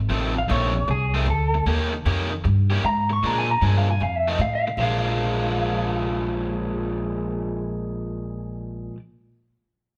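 Laid-back and soulful, this short cut from a longer electric blues shuffle rolls along at 154 BPM in 4/4 with a strong swing on the eighth notes, sitting in Bb mixolydian. A woody, dark upright bass played pizzicato on steel strings sits up front from the start, joined almost at once by a bright, overdriven semi-hollow guitar carrying the riff with a picked, hollow-body bite. From 0.4 seconds an electric guitar through a small old amp takes the melody, its tone slightly broken-up, lo-fi and compressed, bathed in spring reverb. The harmony moves through F7, Eb7 and Bb7 before returning to F7 and shifting to Bb7 at 4.8 seconds, where a new section begins. The band plays live together in one large studio, with a moderate room reverb giving the trio a natural, shared space.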